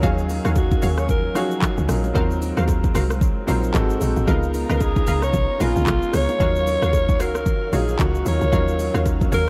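A raspy, gritty alto saxophone with vibrato and digital delay carries the melody up front from 0.6 seconds in this hypnotic, soulful amapiano excerpt, over a clear, worn baby grand piano, a dark, lush bowed string section with sidechain pumping in the background, a punchy, warbling vintage chord stab with chorus and delay, a woody log drum bass with a fast attack, an electronic afro-pop drum kit with a deep kick, smooth hi-hats, handclaps, rim click and shaker, and very quiet, close and dry congas and bongos, set in a small room reverb with a warm production.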